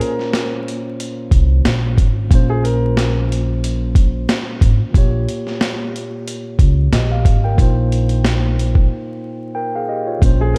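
Moody and gritty, this dark boom-bap hip-hop cut at 91 BPM in Bb dorian rides a compressed, pitched-down sampler drum kit with a thumpy kick and high-tuned snare up front, a mellow tine electric piano with cassette-tape colour holding the chords throughout, a woody pizzicato upright bass entering at 1.3 seconds, and a smooth, vintage upright piano with slapback echo carrying a brief melody that drops out at 3.1 seconds and returns at 10.4 seconds, just after a break from 8.9 to 10.2 seconds, all steeped in vinyl crackle with little reverb.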